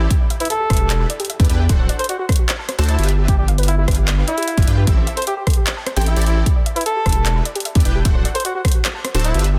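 Future bass in a half-time feel, bittersweet and dreamy, built on a cycle of Em7, D7, G7 and Am7 chords in this short cut from a longer piece. A veiled, bucket-muted trumpet carries the jazz-style melody with vibrato and tape echo, set distant and roomy. Beneath it, a dark, warbling pluck with 12-bit sampler grit and dub echo ripples through arpeggios in the background, while a bright, detuned supersaw stab plays a riff. A deep, saturated sine sub bass sits up front, all of these pumping to the sidechain. Up front as well, a punchy, tape-warm electronic kick drives alongside an overdriven big-room kit of handclaps, hi-hat and rim click, both in small room ambience, under a dense, heavily limited modern master.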